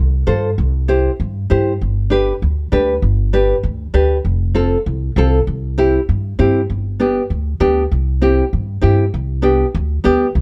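Cumbia at a brisk 197 BPM in straight 4/4, this short, festive and sunny cut from a longer piece pairs an up-front upright bass, plucked pizzicato with a woody, dark steel-string tone, against a fingerpicked nylon-string guitar whose old strings give it a classical, warm character. The bass opens at 0.0 seconds and the guitar joins at 0.3 seconds, the two cycling through F, C and G before a shift to a G over C chord at 9.1 seconds. Light reverb and a dark, warm production round out the sound.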